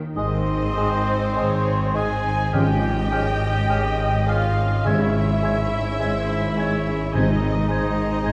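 A rich, lush cello section carries the bass of this slow, lyrical orchestral movement, bowed smoothly with vibrato and heard at a distance, with a bowed double bass section beneath it. The feel is warm and rubato, in a short passage cut from a longer piece. Violins, a mellow cor anglais, a hollow silver flute in the background and a very quiet, clear clarinet share a second line, and a focused, very quiet violin melody with a smooth top enters at 0.8 seconds. Violas with expressive portamento and a roomy bassoon fill out the accompaniment, a dark French horn section holds sustained chords until 7.6 seconds, and a distant trumpet section adds stabs. Timpani played with medium mallets join at 2.5 seconds, and the orchestra is heard from further back in a reverberant concert hall.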